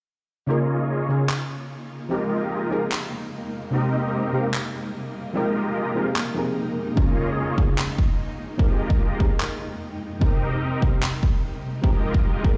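This future bass excerpt opens in a bare stone room with light digital ambience, as if played on a big sound system, and carries a bittersweet, lush mood in F minor at 148 BPM with a half-time feel. A soft, round pluck with a dark edge and a noise layer starts at 0.5 s, alongside huge, detuned supersaw chords that carry the riff with vintage 12-bit sampler grit, a low-pass filter and tape echo. Both pump against the sidechain through a progression that cycles from Db69 to Fm11, Cm7 and back to Fm11. From 1.6 s, a shimmering, ethereal pad adds sustained chords with an octave-up shimmer, granular texture and its own built-in reverb. Layered electronic handclaps sit low in the mix from 1.3 s, and a punchy kick drum arrives up front at 7.0 s to give the second pass of the progression more weight.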